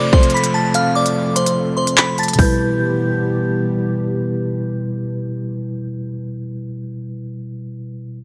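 A glassy synth bell carries the melody from the opening moment, its crystalline, full-bodied FM tone striking with a fast attack and a long, chorused release, set up front over a mellow tine electric piano and a dark analog pad. This is a tense, cold fragment of half-time drill hip hop at 146 BPM in E phrygian, cut from a longer piece. The pad holds sustained chords with a slow attack, its detuned square, sawtooth and triangle waves, sub octave and ring modulation giving it a deep, moody shade under its own chorus. A produced electronic drill kit enters at 0.1 seconds with a hard-clipped kick, crisp hats, handclaps and toms, tape-warm and loud at the front of the mix, while an electronic downlifter sinks in the background. The harmony moves from F to Em at 2.4 seconds, when the kit and downlifter drop away. The clean electric piano, heard as if through built-in speakers, plays on until 8.2 seconds, outlasting the bell, which fades at 3.6 seconds, and the pad, which ends at 5.7 seconds, all within light reverb.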